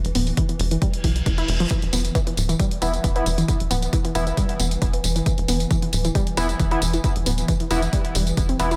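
A light reverb and digital ambience frame this short excerpt of driving peak-time techno, industrial and relentless in mood, in a straight 4/4 metre. A punchy, tape-toned electronic kick sits up front from 0.4 seconds, joined by analog-flavoured electronic hi-hat and tambourine, while a tight sequencer bass of sawtooth and square waves, with a filter pluck, fast attack and decaying tail, rides a mellow low register under sidechain pumping. Behind it, a swarming, tense drone of detuned sine and triangle tones with ring modulation, a moving notch and granular texture holds E3 in the background, bathed in its own reverb and also pumping. A lush, warbling unison pluck riff, vintage and wave-folded with a filter sweep and tape echo, carries the hook across an octave, and a brief electronic reverse cymbal rises in at 1.0 seconds. From 2.8 seconds an edgy sync-sweep polysynth adds bright, nasal, chorused stabs with tape echo, thickening the pressure of the groove.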